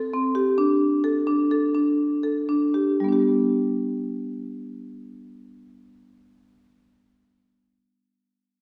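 A lone marimba struck with medium hard mallets opens this restless yet hopeful contemporary instrumental excerpt in 5/4 and G major, playing dark, smooth, percussive arpeggios up front between G3 and A4 at around 116-135 BPM, slowing through the first 3.0 seconds over Am7/C and D5 before settling onto G, all ringing in the lush reverb of a recital hall.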